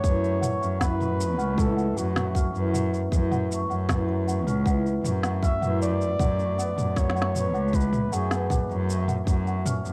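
Folktronica at a relaxed 78 BPM in F# minor, this autumnal, intimate excerpt from a longer piece pairs a mellow, breathy jazz-style flugelhorn melody with light vibrato and tape echo, which falls silent at 8.9 seconds, with a delicate, bell-like celesta line sitting in the background, shimmering hammered cimbalom arpeggios, and a dark, bowed single-player cello bass up front with expressive vibrato, portamento and tube saturation, all over a tight, up-front electronic kick and a produced electronic kit of shaker, woody snare and toms, moving from F#m7 to Bm7 and Dmaj7 in a dry, close 1970s-style studio sound.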